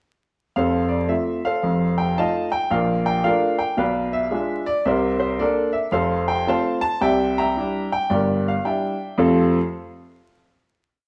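Vinyl crackle and the wet reverb of a stone room surround this short, live-in-one-room recording of playful, exuberant stride jazz with a swung feel. A clear, woody upright piano sits up front and plays from 0.6 s to 9.6 s, carrying the tune over chords and a stride bass through changes that pass from F7 and Bbmaj7 to Bdim7 and C9. The piece settles onto a final F chord at 9.2 s.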